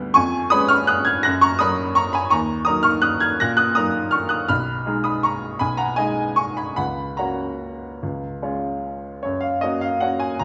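A lilting waltz in three with a flexible, rubato feel, this short classical piece for solo piano moves in a graceful, playful mood. A baby grand carries everything on its own, its tone clear and natural, spanning from B1 up to A#6. The piano sits up front, yet a generous large-studio reverb, with a 1.2-second decay, adds a sense of hearing it from further back in the room. The harmony opens on C#7/E# and settles on F#, then drifts through D#m, G#m/B and F#/C# before leaning on C# around 8.0 seconds. At 9.2 seconds a new section begins, landing back on F#, and the recording ends at 10.4 seconds as a brief cut from a longer work.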